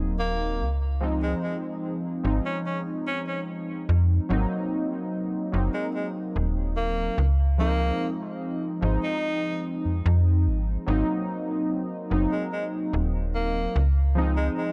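A cassette-tape haze and small room ambience wrap this dreamy, faded vaporwave excerpt in Db major, moving at a slow 73 BPM in a straight 4/4 as it alternates between rootless Ab7 and Dbmaj9 chords. Warbly, detuned lo-fi synth keys with a nostalgic glow sit up front under analog chorus and delay, while a snappy, metallic FM bass with a fast, decaying attack anchors the low end. A bright tenor saxophone enters at 0.2 seconds with a soft attack, vibrato and jazz-style phrasing, its solo line trailed by analog delay.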